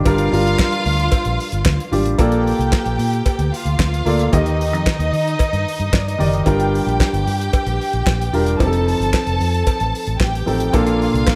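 A damped 70s drum kit, with a fat snare, tight kick, hi-hat and handclaps, drives this sultry, danceable disco excerpt at 112 BPM in G minor. A round, punchy, foam-muted fingered electric bass sits up front with it. An intimate grand piano with audible action noise accompanies chords moving through Gm7, Bbmaj7, Ebmaj7 and F7, adding a brief fill at 5.7 seconds, while a lush, bowed violin section carries a smooth second line with vibrato. A close, dry metallic cowbell sits in the background, and a large studio reverb lends the mix a roomy sheen.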